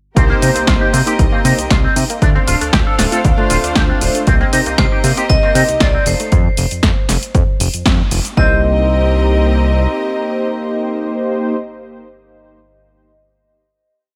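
A groovy, sleek nu-disco piece in C dorian at 117 BPM opens on mellow, brassy synth chord stabs with chorus and digital delay, joined at 0.2 s by a clear symphonic string pad with sidechain pumping, a background analog pluck arpeggio with dub echo, a bright, twangy electric guitar riff through an envelope filter and lush chorus, a fat, saturated octave-jumping analog bass, a punchy four-on-the-floor electronic kick and a house kit of shaker, hats and disco backbeat snare in studio reverb, while a metallic vibraphone with hard mallets and dub echo adds call phrases from 4.8 s and, after a band accent at 7.9 s, the drums, guitar and pluck fall away, leaving a final Cm7 chord to sustain in light reverb over a faint mains hum.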